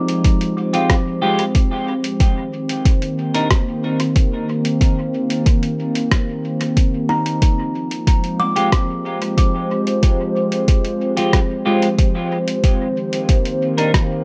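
A deep, overdriven electronic kick sits up front in a straight 4/4 groove, while a muffled, compressed sampler-style kit adds hi-hat and rim click with dub echo trailing behind. This spacious, meditative ambient dub piece, cut from a longer work, rests on a warbling, nostalgic tape-like pad that holds sustained chords through the whole passage, its detuned sawtooth and triangle tones softened by chorus and built-in reverb. A woody, close-miked kalimba rings out dry, full arpeggios under a filter sweep and analog delay, dropping out at 2.9 seconds and returning at 7.1 seconds. A clean, picked electric guitar adds stabs bathed in lush chorus and dub echo, coming back at 8.6 seconds for the closing stretch. The harmony moves between Fmadd9 and Cm7, and the echo-heavy, lightly reverberant mix stays dark and mellow at the top.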